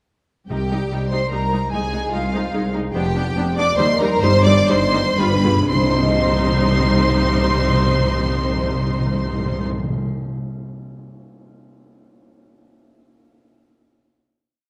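Set in a wet concert hall with a long, glowing reverb, this complete short piece is a dramatic, fast romantic movement for symphony orchestra in C minor, moving in 3/4 at 110-150 BPM with a rubato feel and an urgent, stormy mood. The violins carry a smooth, even melody high in their range with light vibrato, while a second violin line doubles the tune at the octave with a focused, lush tone. Rich, distant violas fill in with repeated notes and sustained chords, and beneath them dark, woody cellos sit in the background with bass on the beats, doubled by expressive double basses. A ringing concert harp plays broken chords in the background, and round, close timpani roll into the louder passages and strike single strokes on bass notes, while very quiet bright cymbal swells and gong strokes shimmer from 2.9 to 7.8 seconds. The music slows after about 2.3 seconds, a timpani fill leads into a full-orchestra accent at 5.7 seconds, and the piece settles onto a final C minor chord, with the harp ringing on until 10.3 seconds.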